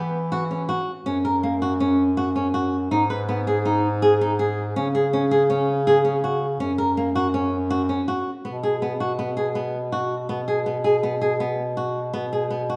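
A fingerpicked flamenco guitar spins acoustic arpeggios up front over a roomy, classical-style bass clarinet bass line in this hopeful, shimmering piece of contemporary chamber music, which moves at 162 BPM in an uneven 5/4 in B major, turns to a new section at 8.4 seconds, and is bathed in the reverb of a recital hall.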